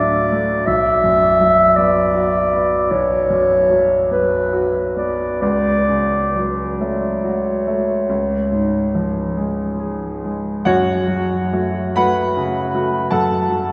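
A dark, soft-attacked clarinet sings an elegiac, yearning romantic melody over a clear concert grand piano with deep bass and long sustain, moving in a slow, rubato 12/8 at about 43-56 BPM in F# minor through a vast cathedral reverb, until the clarinet falls silent at 9.3 seconds and the piano carries on alone to 13.7 seconds.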